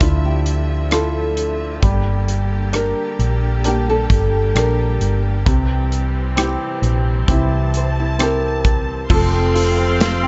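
Pop ballad at 66 BPM in F major, tender and emotional, where a boxy fingerpicked flamenco guitar carries the melody over a felt-muted upright piano with audible action noise, lush bowed strings with vibrato, a dark, round fretless bass and an airy, polished drum kit with a punchy kick up front, before an earthy cello section and a very quiet, twangy clean electric guitar playing arpeggios join at 9.1 s as the harmony arrives on F.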